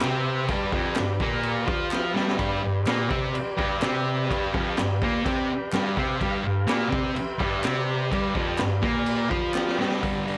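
Rowdy and raw, this garage rock excerpt drives along at 126 BPM in a straight 4/4, centred on G mixolydian and resting on a G chord throughout. A thick, bright fuzz guitar sits up front, its double-tracked, picked riff carrying the track from the lowest register up through the middle. Beneath it, a raw garage drum kit thumps with a punchy kick, a high-tuned snare, hi-hat and crash, its gritty, saturated tone rolled off at the top, with quick fills at 1.9 and 9.6 seconds. A vintage combo organ holds mellow, clean sustained chords drenched in heavy vibrato and plate reverb, then breaks into a fill at 9.1 seconds. Crisp group handclaps sit in the background until 9.7 seconds, and a wet small-room ambience wraps the whole performance in a close, live feel.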